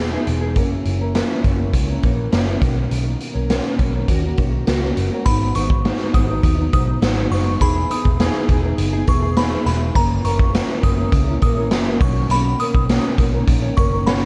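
Up-front garage drums with a punchy kick and medium-tuned snare drive this lonely, hazy bedroom-pop excerpt, set against a small, fingerpicked nylon-string guitar warbling with analog chorus and a dark, round, foam-muted picked bass, before a glassy, crystalline FM synth bell with chorus and delay joins at 5.3 seconds, all softened by light small-room reverb and cassette-tape character.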